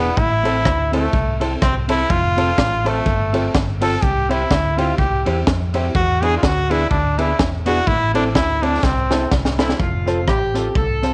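Ska at 125 BPM with a swung, bouncy and cheerful feel, this short cut from a longer piece puts a brilliant, forceful trombone up front, carrying a vibrato-laden solo with slapback echo over an Am, F, C, E7 progression. Behind it, a mellow, clean electric guitar adds background accompaniment and a dark, woody upright piano with audible action noise adds background stabs, while a round hollow-body fingered bass and a crunchy, gritty breakbeat kit with a high-tuned snare and punchy kick drive the groove in a small room. A drum fill at 8.8 seconds leads into a punchy horn section with light vibrato and slapback echo at 9.6 seconds, as the new section lands on F.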